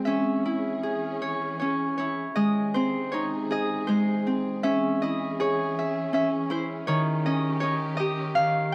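A ringing, fingerpicked Celtic harp carries the melody up front in this gentle, wistful lullaby, its warm acoustic tone sitting close. Beneath it, a warm studio string section holds sustained bowed chords much lower in the mix, with vibrato, portamento and a smooth top lending it an expressive, ensemble sound. The music moves at 80 BPM in 3/4 with a rubato feel, drifting through C#m, G#, back to C#m and then D#7. A short opening phrase gives way at 2.4 s to a longer second passage that runs until the piece is cut off at 8.7 s, part of a longer work. A moderate studio reverb surrounds the two parts of this children's music.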